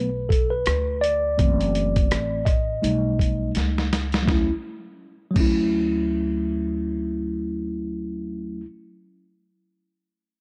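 Relaxed and cool, this short jazz-hop cut from a longer hip hop piece rides a lazy swung sixteenth-note feel. A mellow, clean tine electric piano sits up front through its built-in speakers, taking a solo passage over a rootless G, F#m7b5 and B7b13 before settling onto Dmaj7 as the second section begins. Beneath it, a woody, growly upright bass with steel strings is plucked pizzicato, its dark, acoustic tone anchoring the low end throughout. A gritty, compressed, pitched-down sampler-style boom bap kit enters at 0.3 seconds with a thumpy kick, medium-tuned snare, rim click, hi-hat and crash, sounding tape-warm and re-recorded in a small room; it plays a fill from 3.6 seconds and drops out at 5.6 seconds. Light reverb and digital ambience wrap the whole in a dark, warm production.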